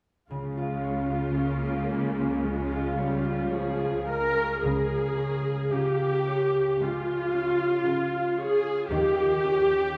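Bittersweet and full of longing, this cinematic excerpt drifts at a rubato 56 BPM in 4/4. An expressive, up-front viola section carries the accompaniment over ringing, fingerpicked concert harp arpeggios, while a rich, focused cello section and a dark, woody double bass section bow with vibrato below. The whole ensemble is bathed in a long cathedral reverb as the harmony moves from Db to Eb7 at 8.9 seconds.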